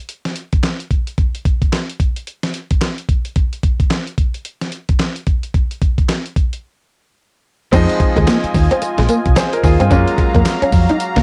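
A swung sixteenth-note new jack swing groove opens this upbeat, flirty R&B snippet, with a gritty, compressed sampler-style drum kit up front carrying a thumpy kick, fat snare, hi-hat, handclaps, tambourine and crash through a dusty cassette haze, leading into a break at 6.6 seconds. At 7.7 seconds the full band arrives over Fm7 moving to Gbmaj7: a round, punchy fingered electric bass sits deep and dark, a clean, direct electric guitar plays a compressed picked riff with ensemble chorus, and a brilliant grand piano adds short, polished accompaniment. Above them, a brassy, nasal analog pad holds detuned sawtooth chords with soft attack, vibrato and a filter swell, all in a light, homespun room.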